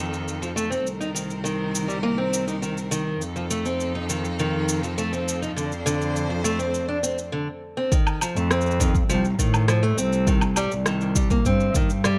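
This hopeful, pastoral folktronica fragment, taken from a longer piece, opens with a bright, focused string quartet holding sustained chords from a distance. From the very start, a boxy picked archtop guitar plays arpeggios up front, coloured by vintage 12-bit sampler grit, a low-pass filter, delay and plate reverb. A dark, veiled cello, bowed and muted with light vibrato, carries the bass line close to the listener from the outset, while electronic cabasa, woodblock and rim click, re-recorded in a large room, tick along in a straight 4/4. The quartet falls away at 7.3 seconds for a short break, and at 7.9 seconds a deep, tape-toned electronic kick drum enters beneath the guitar, cello and percussion. Chords move between F7, Cm7 and Dm7/F before settling on Cm, all within a light reverb.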